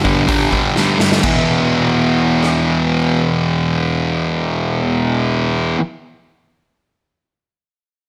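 Set in a small room with light reverb, this gritty, swaggering garage rock fragment in E minor at 126 BPM opens on a dark, double-tracked fuzz guitar riff that moves from G5 to E5 at 1.2 seconds and runs to 5.8 seconds, while a saturated, punchy acoustic drum kit of crash, hi-hat, kick, rim click and snare plays only from 0.1 to 2.5 seconds, with a fill from 0.7 to 1.2 seconds that leads into the change.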